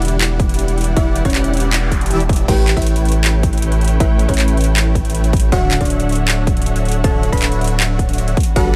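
Future bass at 158 BPM in a half-time feel in D major, this playful, bright passage cut from a longer piece moves through Em7, A7 and Dmaj7, with a round, tine-like FM pluck carrying the melody through chorus and delay in the background, dark bowed studio strings holding sustained chords with vibrato and portamento, a detuned supersaw stab riff with a moving notch filter, and a deep, saturated sub bass up front, all pumping with sidechain, while a trap kit of metallic hats, handclaps, crash and ride sits beside a punchy, overdriven kick that enters at 0.4 s, and a very quiet noise sweep passes through the digital ambience from 1.4 to 2.5 s.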